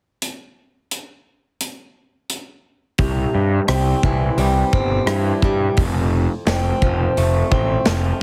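This short excerpt of quiet-loud alternative rock opens with a big acoustic drum kit playing alone, its punchy kick, medium-tuned snare, rim click and hi-hat sitting up front in a studio room. At 3.0 seconds a picked acoustic guitar with a swing feel joins with arpeggios, its bright, boxy tone set in plate reverb, while a fuzz-laden electric bass enters beneath it, growly and overdriven. The harmony moves from C to F at 5.8 seconds, and the bass stands a little louder than the other parts. The overall sound is heavily compressed, with a radio-style squeeze and a light reverb, giving the short passage a restless, cathartic push in a straight four-beat metre. The parts drop away around 8 seconds.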